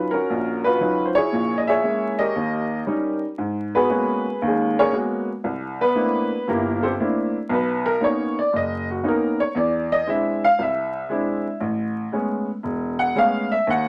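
Through a vinyl crackle and a moderate studio reverb, this swinging, late-night solo jazz fragment, cut from a longer piece, features a woody, boxy upright piano placed up front, moving from Ebm9 through rich extended harmonies such as G#m11, C13 and Bmaj9 before settling on Amaj9 near 11.6 seconds.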